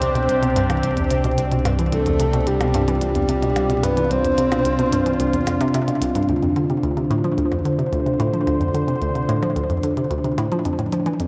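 This cosmic, mysterious stretch of sequencer-driven ambient space music at 110 BPM opens with a breathy, flute-like synth lead drifting through chorus, shimmer reverb and delay over an evolving, resonant sawtooth pad, a bouncy, detuned square-wave pluck riff placed up front with phaser, a round, deep analog bass, clicky electronic hi-hats and percussion blips, and a very quiet pulsing gated texture. The lead falls away at 5.7 seconds, and the bass and texture drop out at 6.3 seconds as the music settles into D minor, leaving pad, pluck and percussion afloat in a lush concert-hall reverb with lossy compression artefacts.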